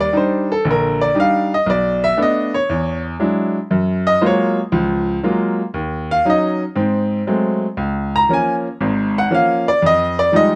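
Late-night and smoky, this brief solo jazz excerpt swings at 118 BPM in 4/4 as a bright, woody upright piano plays up front alone from 0.0 to 10.6 seconds, ranging from Ab1 to Bb5 through rich chords like Ebmaj7, Gbmaj9, Ab7b9 and Db6, its vintage, brilliant tone captured by close, detailed microphones with light reverb.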